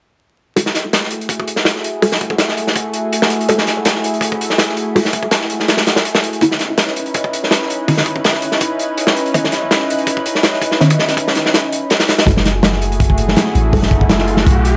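Drum and bass in a jungle vein at 164 BPM in F# minor, this frenetic yet nostalgic excerpt pairs a crunchy, gritty breakbeat kit placed up front with a lush, warbling detuned pad and muted, phased dub chord stabs trailing echo over F#m9 and C#m9, before a deep, mellow 808-style bass arrives at 12.3 seconds and a background electronic riser builds from 13.1 seconds, all set in a moderate echo chamber reverb with vinyl crackle.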